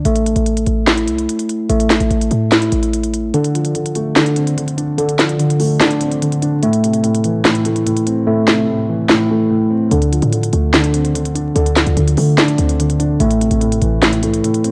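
A half-time trap groove in 4/4 drives this eerie, menacing hip hop passage, cut from a longer piece. The electronic trap kit sits up front with a sharp snare, crisp hi-hats and handclaps, while a punchy, tight 808-style bass with a sine body, a noise layer, a fast attack and a decaying tone anchors the low end. A worn, slightly out-of-tune tine electric piano plays arpeggios throughout, heard clean through a combo amp and shaded by a low-pass filter and analog delay. At 3.3 seconds the bass and kick drop out and a dark, mellow concert grand piano enters as accompaniment, boxy and deep in the bass, also low-pass filtered and placed up front. The hi-hats fall silent at 8.3 seconds, then the kick, hats and bass return together at 9.9 seconds, with harmony moving between Dm7 and Am. The whole passage has a dry, gritty hardware character with light reverb and vinyl crackle.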